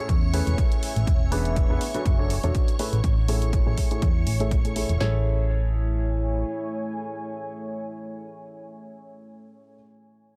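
A punchy analog drum machine kick and snare, tape-warm and up front with a small-room character, drives this joyful, euphoric piano house cut at 122 BPM in 4/4 with a light 16th-note swing, joined by an electronic hi-hat until around 5.0 s and a round, mellow FM bass that stops at 6.4 s. A clear grand piano riff in A major carries the excerpt, roughened by vintage 12-bit sampler grit and tape echo, and filter-swept through the opening 5.0 s, over shimmering string-machine violin chords and a deep, moody, warbling pad. The piano, strings, pad and bass all pump to the sidechain, while Amaj7, E7 and Dmaj7/F# chords give the track a euphoric lift under a light reverb.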